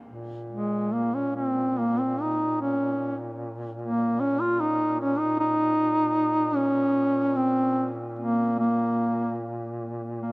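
Loose rubato at 73 BPM in 4/4 with uneven beats carries this mournful, solemn Caucasian folk fragment in Bb minor, cut from a longer piece, where a mellow, soft-attacked duduk drone on Bb2 sits up front with a smooth top from 0.1 s, and a second duduk enters at 0.5 s with a distant, roomy melody between Ab3 and F4, its vibrato and scooped notes hanging in a moderate cathedral reverb within a dark production.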